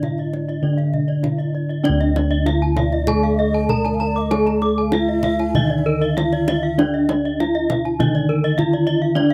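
Ceremonial and shimmering, this brief cut from a longer Balinese gamelan piece moves at 98 BPM in 4/4 with an uneven beat, centred on D pelog. A bronze metallophone struck with a wooden mallet carries the melody with a ringing, mid-forward tone, its paired tuning producing beating shimmer. A darker, smooth metallophone played with a horn mallet sits in the background as low accompaniment. Two higher metallophones spin arpeggios: one bright and airy, the other boxy and small-roomed, entering at 0.3 seconds. Round, dark bossed gongs hold the bass up front, while a tight, compressed, saturated kendang adds hard-handed percussion. A breathy, mellow xiao traces a soft, unsteady second line with vibrato in the background until 7.4 seconds, all captured in a dry, close 1970s-style studio sound with light reverb.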